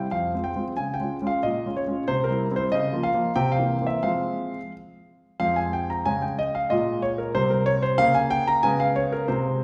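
A concert grand piano, intimate and natural with deep bass and audible action noise, carries this restless, serious classical-period sonatina excerpt in a rubato 2/4, its solo line moving through minor-key harmony in a reverberant recital hall heard from further back in the room.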